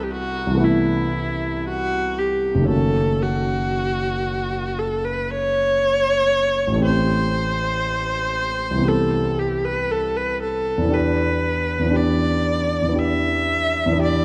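In a free, rubato 4/4, this dreamy, pastoral impressionist classical duo sets a single bowed viola, rich and focused with vibrato, singing the melody up front over a dark, mellow grand piano whose deep bass and audible action noise give the accompaniment an intimate, vintage feel, both playing throughout this brief cut from a longer piece inside a concert hall's moderate reverb.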